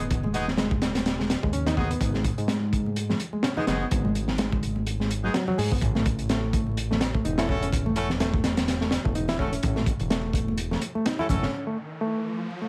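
A swaggering, gritty breakbeat cut from a longer piece at 126 BPM with a swung sixteenth feel, built on a barky, reedy electric piano riff coloured by fast tremolo, tube saturation and dub echo, brilliant horn stabs with vibrato, octave doubling and their own dub echo, a fat, detuned sawtooth bass with a filter sweep, a crunchy, up-front drum kit with a punchy kick and high-tuned snare, and very quiet congas, moving from G#m7 to A6 in a dry mix under vinyl crackle until an electronic riser enters at 10.9 seconds and the drums, bass and horns stop at 11.5 seconds, leaving the electric piano and riser in a short break.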